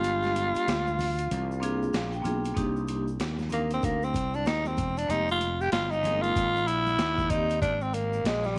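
A breathy, growling tenor saxophone sits up front in this mellow, nocturnal jazz-hop excerpt in C minor at 95 BPM with a swung 4/4 feel, carrying the melody before taking a solo from 2.6 seconds, over a dark, ringing vibraphone that adds a fill at 1.6 seconds, a growly fretless electric bass, a gritty, pitched-down boom bap drum kit whose thumpy kick drops out from 1.3 to 2.6 seconds, very quiet tube shaker and congas, light reverb and vinyl crackle.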